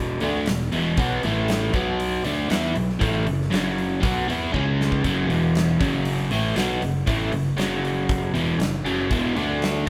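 A live-sounding band in one large studio room, with a moderate reverb, carries this raunchy, driving blues rock and southern rock excerpt at 118 BPM in a straight 4/4. A bright, crunchy, double-tracked electric guitar sits up front, picking a riff through E5, B5, A5, F#5 and C#5 chords over a growly, fuzzy, overdriven fingered bass. A huge arena kit with a pumping room sound, punchy kick, medium-tuned snare and hi-hat drives underneath, with a drum fill from 4.5 to 5.0 seconds.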